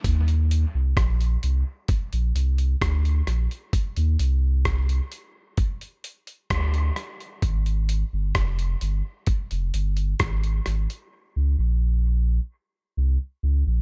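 Dub reggae with a hazy, spacious mood, cut from a longer piece and moving at an unhurried pace in a straight four-beat feel. A deep, round sub bass sits up front throughout, its sine-like tone mellow and sustained, with a fast attack that gives each note a clear start in the low register. Beside it, a dusty, soul-flavoured sampler-style drum kit plays hi-hat, kick drum and rim click, sounding compressed and gritty with a thumpy kick, also placed up front. A digital ambience lends the sound its airy, open quality. At 11.1 seconds the drums fall away, leaving the sub bass alone until the close at 13.8 seconds.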